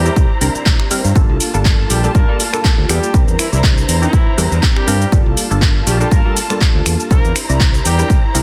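A punchy, up-front electronic kick with small room ambience drives this groovy, sensual filtered disco house cut at 121 BPM in G dorian, swung on the 16ths, with a house kit of finger snaps, handclaps, metallic pumping hi-hats and shaker. A growly, tube-saturated fingered bass, a funky detuned sawtooth polysynth comp with chorus and phaser, and lush bowed symphonic strings with vibrato and portamento all pump under the sidechain and sit behind a low-pass filter, moving between C7 and Gm9. On top, a clear horn section with octave doubling carries the melody through vintage 12-bit sampler grit and delay, in a dense, heavily limited, nearly dry mix.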